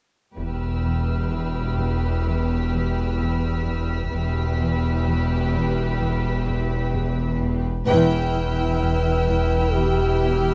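A slow, straight 4/4 pulse at 64 BPM underpins this uneasy, mysterious cinematic fragment in E minor, tuned to A4 = 435 Hz, where from 0.4 seconds a distant violin section carries a lush second line. A very quiet, expressive cello section plays a riff beneath it, a studio cello section holds the bass on E2, a focused double bass section sits in the background on E1, and a deep sine-and-triangle sub bass drone sustains alongside. High above, another violin section adds a warm, smooth texture. At 7.9 seconds a band accent opens a new section: a second violin section takes the melody on G5, a dark solo clarinet joins on a second line, and a soft-attacked viola section adds accompaniment with portamento, all under light reverb until 10.5 seconds.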